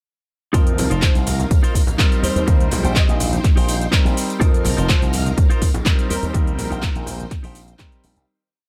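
A punchy four-on-the-floor electronic kick drives this joyful, feel-good filtered disco house piece at 124 BPM in Eb major, with a house kit's metallic hats, claps and shaker, background tambourine and congas, a bright funky slap bass through an envelope filter and tube saturation, warm phased baby grand piano chords, a clean tremolo electric guitar riff, a lush vintage string machine pad, and a fat, nasal analog synth brass melody with tape echo from 1.0 to 7.3 seconds, everything but the kick pumping to the sidechain over F7sus4 and Eb6 in a dry mix that fades out from 5.7 seconds.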